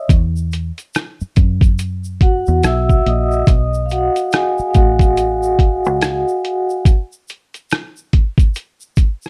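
Lo-fi hip hop at 71 BPM in 4/4, swung on the sixteenths, with a mellow, dreamy mood in this short cut from a longer piece. A vibraphone played with soft mallets carries the foreground, its metallic, ringing tone shaded by a slow motor vibrato and a low-pass filter, and set in a boxy small room. Beneath it, a deep dub fingered electric bass sits up front with a dark, round, foam-muted sound, moving between Esus2 and B7. The boom bap sampler-style kit of kick, hi-hat and rim click is the loudest part, compressed, pitched down and gritty, with a thumpy kick, while a grainy egg shaker ticks quietly in the background. The vibraphone stops at 6.9 seconds and the bass at 6.2, leaving drums and shaker alone for a break that runs until the end at 9.3 seconds.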